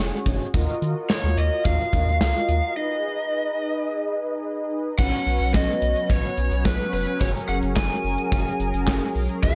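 Synth-pop with a driving, cool mood, this excerpt from a longer piece opens on chorused, brassy synth brass and a round, deep analog bass, with a punchy gated 80s drum kit of crash, handclaps, hi-hat, kick and snare entering up front at 0.3 s, an overdriven, lo-fi lead guitar with slapback echo carrying the melody from 1.1 s, a break at 2.8 s, and an evolving, full-bodied resonant pad with a filter swell and slow attack joining at 5.0 s, all set in a concert hall reverb.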